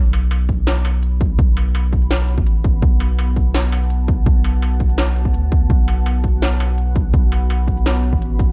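Heavy and spacious, this half-time drum and bass excerpt at 167 BPM opens on a deep, mellow 808-style bass that sits up front with long, decaying sine notes. An industrial kit of clanging snare, crisp hats and struck metal enters at 0.1 seconds. At 0.4 seconds a dark, moody pad of detuned sawtooth unison with a sub octave fades in slowly on sustained chords, its chorus and reverb breathing with sidechain pumping. A heavy electronic kick follows at 0.5 seconds. Both drum parts are re-recorded in a large room for a cavernous, dark production.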